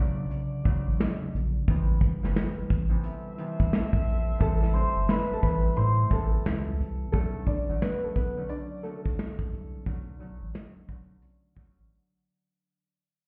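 A swung sixteenth-note boom-bap groove in 4/4 rides on a soft brush drum kit with a punchy kick and rolled-off top, entering at 0.3 s beside a deep, round sub bass, in this gritty, dark hip-hop fragment cut from a longer piece. A mellow fingerpicked concert harp with a cassette-tape tint rings under bright jazz horn stabs with slapback echo over minor-ninth chords, and the horns drop away at 6.8 s. A woody, vintage upright piano carries the melody from 4.4 s before the whole track, heard muffled through a wall in a stone room, fades out.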